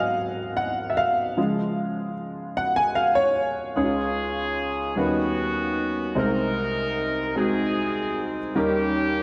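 This gospel excerpt, cut from a longer piece, has a hopeful, reverent mood and moves in a straight 6/8. A grand piano opens alone, its intimate, natural tone sitting up front with audible action noise and a touch of analog chorus as it carries the accompaniment across a broad register. At 3.8 seconds a punchy, vintage-flavoured horn section enters with the melody, tight and pop-styled, colored by a diffuse ambient delay. The harmony passes through chords such as Ab7, Db and Eb7alt before settling toward Eb7 near the close. A wet plate reverb soaks the whole mix, giving it a dreamy, clear glow that lingers around both parts until the final moment at 9.2 seconds.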